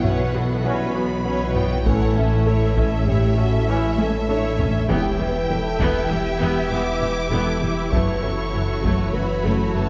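A rich, close cello section sits in the background of this short excerpt of a cinematic, hybrid orchestral and electronic film score, its bowed, lush vibrato anchoring the bass alongside a smooth double bass section and a deep, clean sine sub bass. Set at 99 BPM in a straight 5/4 in E dorian, the mood is futuristic and relentless, with the harmony moving from Bsus2 to A, then Em at 4.9 seconds and F#m7 at 7.9 seconds. Above, a symphonic violin section carries the focused, smooth-topped melody while a second violin section adds a supporting line and a distant studio viola section fills in accompaniment. Sustained chords come from a dark, roomy French horn section, a bright, tight trombone section entering at 0.7 seconds, and a very quiet, ethereal pad with slow attack and long release. A very quiet sequenced sawtooth synth drives arpeggios with chorus and phaser, a hushed taiko ensemble struck with hard sticks plays a fill between 4.0 and 4.9 seconds, and a soft, felt-muted upright piano with audible action noise adds intimate texture. 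The dark production sits in a moderate concert hall reverb.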